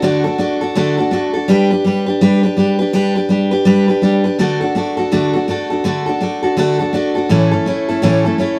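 A rock excerpt with an upbeat, rollicking mood, carried entirely by a lone picked steel-string acoustic guitar that plays from 0.0 to 8.6 seconds. The guitar sits up front with a bright, fresh-stringed dreadnought tone, ranging from A2 up to B4. It moves from D to G, back to D, and arrives on A, giving the brief passage a sense of forward motion. The eighth notes carry a light swing in a steady 4/4, lending the picking an easy bounce. A moderate stone-room reverb surrounds the instrument, and the sound has the immediacy of musicians playing live together in one space, though only the guitar is heard in this short cut from a longer piece.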